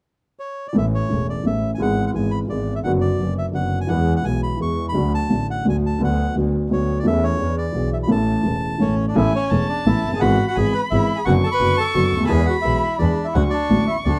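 A reedy, dark bandoneon opens this passionate, elegant tango at 0.4 s, carrying the melody up front in a boxy small-room tone, and an intimate upright piano joins almost at once with woody, short-sustained chords and audible action noise. A single bowed double bass follows with an earthy, clear line touched by light vibrato and an airy bow, grounding the harmony in A major. The tempo sits at 171 BPM in 3/4, played with a rubato feel that lets the phrases breathe through a progression moving from A through E/G#, Bm/F#, E and D. At 9.2 s the opening material returns, and a single bowed violin enters as a second line high above, nasal and expressive, with soft attacks, vibrato and portamento. Close, detailed microphones and light reverb keep the ensemble present and natural, and the recording is cut from a longer piece.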